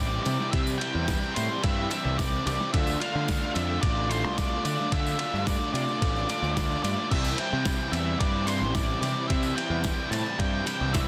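Carefree and jangly, this indie rock excerpt sets a dark, distorted octave-fuzz lead guitar melody over two overdriven guitar riffs in the background, one biting and one crunchy and bright with ensemble chorus, plus a growly fuzz picked electric bass, while an up-front, gritty boom bap sampler-style drum kit with thumpy kick, medium-tuned snare, crash and ride and a jingly tambourine both enter at 0.3 s, the mix dry, dense and heavily limited as the chords move from C to Dm and back to C.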